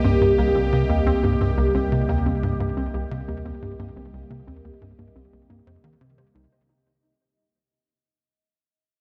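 A straight 4/4 pulse at 88 BPM carries this brief cut from a longer piece of ambient, sequencer-driven space music in C minor, tuned to A4 = 445 Hz and resting on a single Cm7 chord. Up front, a swirling, wave-folded analog pad holds sustained chords, its detuned sawtooth body colored by phaser and chorus. Beneath it, a tight, punchy sequencer bass drives a riff through analog chorus and tape echo, while a deep, round sine sub bass sits on a low C. In the background, a warbly, lo-fi pluck spins arpeggios through chorus and tape echo, and a faint gated texture pulses in tempo on a high Eb, bathed in its own reverb. The dreamy, reverb-soaked mix feels mysterious and expansive, and it fades out across its full 6.5 seconds.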